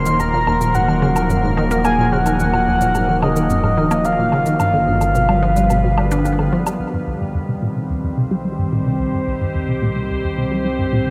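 A mellow, octave-layered synth lead with vibrato and tape echo opens this hypnotic, cosmic excerpt of sequencer-driven space music at 109 BPM, over a morphing, warbling wavetable pad up front, a deep, round analog bass and a faint pulsing, tempo-synced texture in the background. A squelchy, resonant blip pluck riff with tape echo and a light electronic shaker and woodblock join almost at once, moving from Ebmadd9 to G7; the lead drops out at 6.2 seconds. From 6.8 seconds the music settles into C minor as the percussion and texture fall away and a filter sweep shapes the synth arpeggio, all bathed in a huge, wet reverb with a cassette-tape character.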